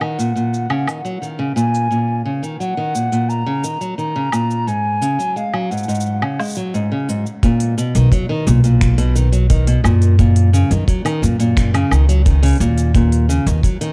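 Folktronica at 87 BPM in B lydian, playful and pastoral, where a pure, distant wooden flute with vibrato sings a tape-echoed melody until 6.4 seconds over dark, fingerpicked nylon-string guitar arpeggios and a crisp electronic kit of cabasa, finger snaps, hi-hat and woodblock, before a tight, dry kick enters at 7.4 seconds and a thumpy, woody pizzicato upright bass joins up front at 8.0 seconds, all within a small-room, dark and warm production cut from a longer piece.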